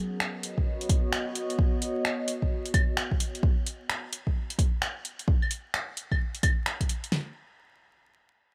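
A swung 16th-note shuffle in 4/4 drives this brief, nocturnal and wistful future garage fragment, cut from a longer piece. A warbling, detuned pad sustains a Bmaj7 chord from the start, its slow attack and long release softened by chorus, phaser and reverb and pumped by sidechain, until it stops at 3.4 s. Layered electronic deep house drums sit up front with a tape-warm, small-room character. Claves, finger snaps and hi-hat enter at 0.2 s, while a deep kick and fat snare arrive at 0.6 s, the kick and snare sitting louder in the mix. A layer of vinyl crackle runs through the mix, adding dust to the pad's mellow, lo-fi nostalgia.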